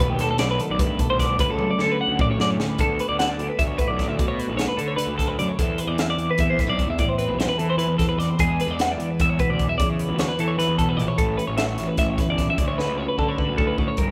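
Math rock with a midwest emo tinge, this wistful, bright excerpt from a longer piece races along at 300 BPM in eighths in 7/8 in D major, with a twelve-string electric guitar picking clean, compressed, twangy chords up front while a second bright twelve-string spins arpeggios through spring reverb, a growly fuzz picked bass adds overdriven grit, and a crisp fusion kit with a high-tuned snare, punchy kick and saturated, pumping room sound rolls through fills at 1.6 and 12.8 seconds, the band captured live in one large studio room with a faint mains hum over chords moving from B7alt through Dmaj7, D6, Cmaj7, E7 and A7.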